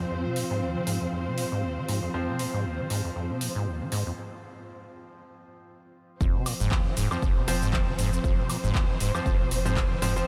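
A squelchy, resonant acid saw bass with a filter sweep drives this trippy 118 BPM acid house excerpt in F minor pentatonic, over sustained strings with vibrato and portamento, brilliant filtered piano stabs, an ethereal pad that drops out at 4.2 s before the break, a tape-toned drum machine of handclaps, metallic hats, shaker and woodblock, and a punchy kick with round sine sub bass dropping in at 6.2 s, all bathed in dreamy, cavernous reverb.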